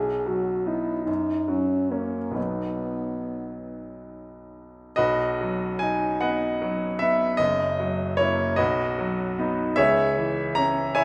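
A warm French horn sings a lyrical, classical-style melody up front for the first 3.7 seconds over a clear, intimate baby grand piano whose natural tone, long sustain and audible action noise carry the accompaniment on alone until 11.0 seconds, forming a serene romantic duo in B major at a rubato 44-51 BPM in 6/8, set in a wet recital hall reverb and cut from a longer piece.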